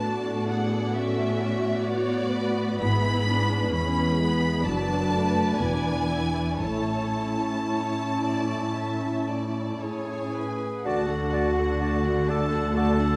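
At a slow, rubato 55-68 BPM in 4/4, this serene, warm classical excerpt in A major sets lush bowed violins singing the melody over a second violin line, expressive viola accompaniment with portamento, mellow French horn chords and a woody, up-front cello bass, joined at 2.8 s by rich, distant double basses, while a clear, roomy clarinet enters at 9.8 s and a pure flute group, a vintage-toned oboe and a very quiet bassoon add brief touches near the close, all bathed in a wet scoring-stage reverb.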